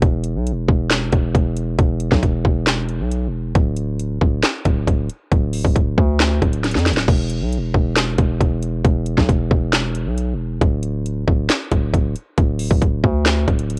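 Menacing and eerie, this short trap cut from a longer hip hop piece moves at 136 BPM in 4/4 with a half-time feel. A heavy, distorted 808-style bass sits up front for the full 13.8 seconds, its sine core thickened by a noise layer and saturation, with a fast attack that decays into aggressive low notes between D1 and F2. The electronic trap drum kit plays throughout alongside it, built from a hard-clipped kick, a sharp snare, handclaps, metallic hi-hats and crash cymbal, all pushed up front and coloured by cassette tape. A brief drum fill from 6.6 to 7.1 seconds breaks up the single section. The mix is dry, with little reverb, and carries the character of a home recording on cassette, tuned slightly sharp at A4 = 441 Hz.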